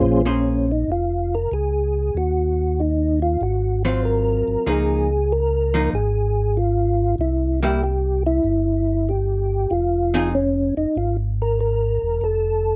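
Jazz in Bb minor at 95 BPM, swung on the eighth notes in 4/4, with a smoky, late-night mood across this short 12.8-second cut from a longer piece. A percussive tonewheel organ carries the melody, its soft, flute-like tone clean and touched with second-harmonic percussion, colored by chorus vibrato and a slow rotary speaker. Beneath it, a second tonewheel organ plays the bass line, round and dark, lightly overdriven and also turning through chorus vibrato and slow rotary. A vintage hollow-body jazz guitar, electric, picked and compressed with a dusky clean sound, supplies accompaniment until 10.3 seconds, leaving the two organs to finish together. The harmony moves from Bbm9 through Ebm, Ab13 and Db69 before shifting to C, Fm and finally F, all heard up front through close, detailed microphones with little reverb.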